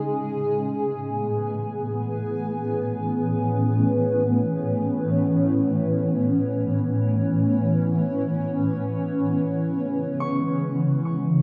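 Peaceful and serene, this free-time ambient fragment in A lydian rests on an up-front, dark yet shimmering and ethereal pad whose slow-attack sustained chords carry an octave-up shimmer and granular, evolving texture through chorus, built-in reverb and phaser, moving from A to C#m at 9.1 seconds. A thumb-plucked concert harp, ringing and set back in the mix, plays arpeggios through analog delay at the opening and again from 10.2 seconds. A plate reverb with a 3.0-second decay soaks the whole mix in a dreamy haze.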